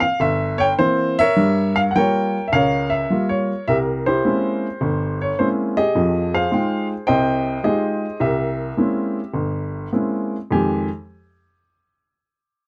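Moody and cool, this short solo jazz fragment from a longer piece features a woody, natural upright piano placed up front, playing in a swung, rubato 4/4 through C7, Gm7b5, C7b9b13 and Fm9 with light reverb and close, detailed miking before it falls silent at 10.9 seconds.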